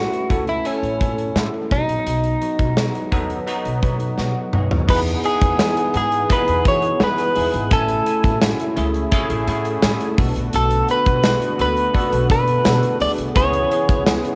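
A straight 4/4 groove drives this nostalgic, uplifting 1980s-style pop passage, cut from a longer piece, with a big rock drum kit sitting up front: punchy kick, a medium-tuned snare, bright cymbals, hi-hat, tambourine and toms ring out in a large room. A clean, direct-recorded electric guitar carries the picked, compressed melody through analog delay. Alongside it, a bell-like tine electric piano accompanies through ensemble chorus, cassette-tape colour and plate reverb, while a woody, thumpy upright bass is plucked pizzicato on steel strings. After a drum fill at 4.2 seconds, the harmony opens onto lush seventh chords at 4.9 seconds, where a very quiet, smooth, detuned sawtooth pad and a grainy, close egg shaker join in. The electric piano adds a fill at 9.1 seconds, and the whole passage carries the soft haze of a home cassette recording with light reverb.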